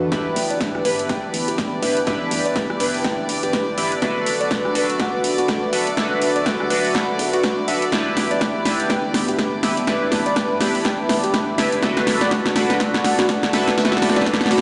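The groove moves in 4/4 with a swung sixteenth-note feel, driven by an overdriven, punchy analog drum machine up front playing hi-hat, rim click and snare, while a tape-warm electronic kick sits in the background and a hollow, knocking FM bass bounces very quietly beneath. This smooth, deep house passage, cut from a longer piece, is a build-up with a drum fill running through it, and its chords alternate between A9sus4 and E9sus4. Up front, a glossy, retro chorused polysynth plays mellow stabs through phaser and analog delay, and a warbling, lo-fi pluck spins dusty arpeggios with subtle chorus and delay in the background. A moody, dark analog pad holds sustained chords, swept by a filter and pumped by sidechain, while an ethereal, airy pad adds faint texture and a distant, reedy violin section with gut-string tone bows softly behind it. The whole track carries a moderate plate reverb and sounds as if played on a big system in a bare stone room, with the top end rolled off.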